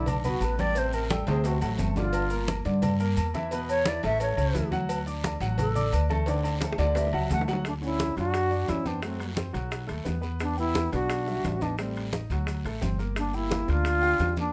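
A straight 4/4 Afro-Cuban jazz groove at 174 BPM drives this lively, sophisticated passage in D major, cut from a longer piece. Ringing congas, tight high-tuned cowbell and bongos, metallic agogo bells and timbales, raspy guiro and grainy maracas sit in the background, with a drum fill arriving around 6.3 seconds. An up-front, woody pizzicato upright bass anchors the low end, while a polished grand piano supplies chordal accompaniment through moves such as Em7, Am7 and D7, later opening onto Dmaj9. The airy alto flute carries the melody with vibrato and a crisp attack, taking a solo through the first half. At 7.7 seconds a mellow trombone enters as a second line, adding a jazz-style voice with light vibrato. The sound is close and detailed, with light reverb.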